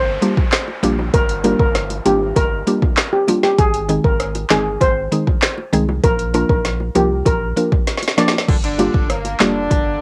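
A shimmering, mellow steel pan carries the melody over a bouncy, tough dancehall groove at 98 BPM in G phrygian, its tone soaked in cassette tape grit and tape echo, while a woody FM synth pluck pumps against the kick with chorus and phaser. An overdriven electronic drum kit with deep kick, woody snare, metallic hats, handclaps and rim clicks sits up front, supported by a thick, saturated sub bass, soft low-tuned bongos in the background and an electronic downlifter that runs until 3.6 seconds, all moving through Gm7, Ab and Bb. During a drum fill, the steel pan stops at 8.3 seconds, and a tight horn section with vibrato and octave doubling enters on the second line from 8.5 seconds in this lo-fi home cassette recording with light reverb.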